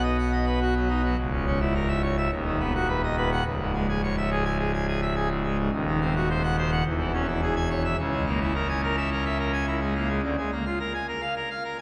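A solo pipe organ on full organ with mixtures dominates this dramatic, stormy classical toccata at 106 BPM in 4/4, its majestic, brilliant sound placed up front and spanning C#1 to G#5 in a romantic voicing. The harmony moves from B through diminished and minor colours such as C#m and A#m7b5/C# before landing on A#7/D around 10.2 seconds. A wet cathedral reverb with a long 4.9-second decay surrounds the organ throughout this short passage cut from a longer piece.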